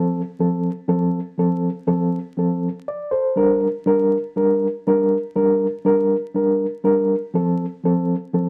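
Driving and urgent, this short soul excerpt moves at 121 BPM in 4/4 with a straight feel in G minor, cut from a longer piece. A solo reed electric piano, reedy and mellow with a clean tone through its built-in speakers, sits up front with a medium tremolo, ranging from F3 to D5 over chords that shift from F to Gm at 3.4 seconds and back to F at 7.3 seconds. A wet studio reverb and a layer of vinyl crackle colour the sound.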